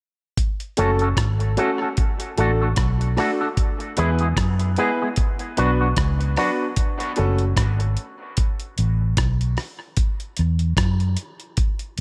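Deep and hypnotic, this dub reggae excerpt moves at 75 BPM in 4/4 with a swung sixteenth-note feel, set in F# minor. A dusty, sampler-style drum kit comes in at 0.4 seconds, its compressed, gritty hi-hat, rim click and thumpy kick sitting up front, while a vintage fingered electric bass enters at 0.8 seconds and carries on to the close, dark, round and foam-muted, low in the mix's foreground. Alongside the bass, a clean, picked electric guitar runs through an envelope filter with a twangy edge, washed in spring reverb and dub echo until it drops out at 6.5 seconds. A brilliant baby grand piano adds open, long-sustaining stabs soaked in dub echo, dropping out of the arrangement at 7.4 seconds. The chords cycle through F#m, D, E and Bm, return to F#m, then move on to Asus2 and Esus2, and the echo-heavy mix, touched with light reverb, leaves drums and bass carrying the final stretch.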